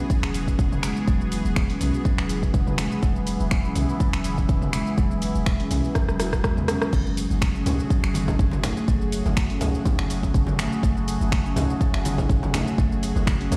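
The recording sounds as if it is played through a big sound system in a bare stone room, with a light reverb around this warm, driving afro house cut from a longer piece. A deep, tape-colored electronic kick sits up front, while an overdriven, layered deep house kit adds hi-hat, shaker, finger snaps, rim clicks, toms and crash cymbal, with a gentle swing on the sixteenths. Underneath, a boomy, sine-based 808-style bass with a fast attack and a noise layer pumps with sidechain, and a marimba played with soft mallets runs mellow, round arpeggios through sidechain pumping and tape echo. An airy, detuned sawtooth pad holds smooth, slow-attack chords colored by chorus and phaser, moving from Eadd9 to F#madd9 at 6.9 seconds. A drum fill from 6.0 seconds leads into that change, where ringing congas struck with hard hands enter in the background.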